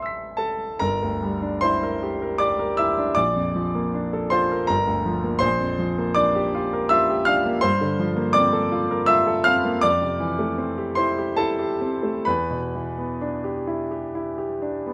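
Mysterious and nocturnal, this impressionist classical piece for solo grand piano moves in a rubato 3/4 at roughly 61 to 85 BPM, centred in G dorian and drawn from a longer work. The clear, smooth piano sits up front with a vintage character, ranging from deep bass to high treble through rich harmonies such as Gm6, Bbmaj7, Gm11 and Fmaj9 before settling on Em7 at 12.3 seconds. Close, detailed miking with little reverb keeps every note intimate and exposed.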